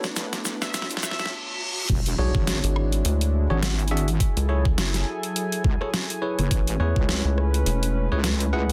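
Funky and playful, this glitch hop passage at 104 BPM swings its 16ths over a Bm9, E13, F#m9 and Amaj9 progression, opening with a build-up where a grainy egg shaker, a drum fill, a riser, a reverse cymbal, filter sweeps and a brief edgy, tearing sync lead with vibrato on E5 sound over a heavy, resonant wobble bass. The drop lands at 1.9 seconds with an impact and a knocking, overdriven electronic kick that runs until 7.1 seconds, joined at 2.2 seconds by a rubbery, hollow square bass up front. Throughout, a dubstep kit of deep snare, bright hats, crash and rim click plays in a small room, a bell-like tine electric piano stabs through digital delay, and a smooth analog pad and a warbling, nostalgic, lo-fi tape-like pad pump in the background of a dense, heavily limited modern master.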